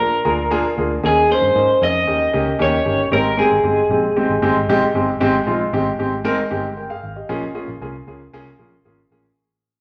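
A large studio reverb bathes this short clip from a longer piece of uptempo, 1960s-style soul, giving it a wet, roomy glow that suits its danceable, warm mood. Up front, a bright, twangy electric guitar played through a small old amp picks out the melody, its slightly broken-up, lo-fi tone carrying a picked edge until it drops out at 4.9 seconds. A concert grand piano sits close by in accompaniment, its deep bass adding body beneath the chords. Underneath, a vintage foam-muted electric bass, played with the fingers, lays down a dark, round, amped low end. The harmony moves through Bb7, Eb7sus4 and Eb7 before settling on Abmaj7, with a Bbm7 arriving later. From 5.2 seconds the clip fades out, leaving piano and bass to carry on to the end.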